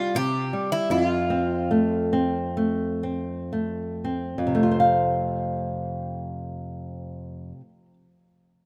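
A bright, metallic Greek bouzouki carries the melody at the front of this short fragment of a tender, nostalgic fado-style ballad. Its picked double strings, some doubled at the octave, ring within a narrow span until it falls silent at 3.5 seconds. Beneath it, a small, warm, fingerpicked nylon-string guitar with fresh strings provides accompaniment across a broad range, continuing alone until 7.9 seconds. The feel is rubato in 4/4, and the music slows through its opening 4.6 seconds before moving into a second section, with the harmony going from a C5 chord to F. A lush hall reverb surrounds the pair, while the mix has the rough character of a home demo.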